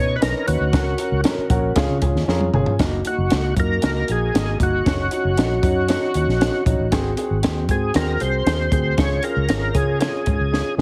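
Uptempo 1960s-style soul with an uplifting, joyful mood: a gritty, overdriven tonewheel organ carries the melody with key click, chorus vibrato, slow rotary speaker, plate reverb and tape echo, while a woody, mellow upright piano comps beneath it and adds a fill from 1.2 to 2.8 seconds. A round, foam-muted electric bass joins a compact cocktail drum kit whose high-tuned snare and punchy kick sit up front, the kit entering at 0.2 seconds and adding fills at 2.3 and 10.5 seconds. The mix is heavily compressed in a radio-like way with light reverb, and this short cut from a longer piece moves from a Badd9 opening through F#6 and G#7 to C#.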